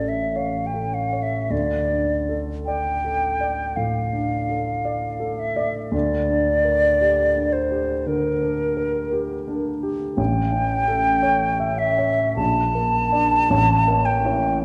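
A wet recital-hall reverb surrounds this dark, warm recording of a short excerpt of melancholic, elegiac romantic classical music for flute and grand piano, in D minor with A4 tuned to 444 Hz and a slow, rubato 4/4 at 50-57 BPM. The up-front, close-miked concert flute carries the melody with a hollow, pure tone, tongued notes and vibrato, while the dark baby grand piano accompanies with a mellow, long-sustaining sound reaching down into its low register. The harmony moves from D minor through G minor over D to A7, touches B-flat at 12.4 seconds, and comes to rest on a tense A7b9 at 13.5 seconds.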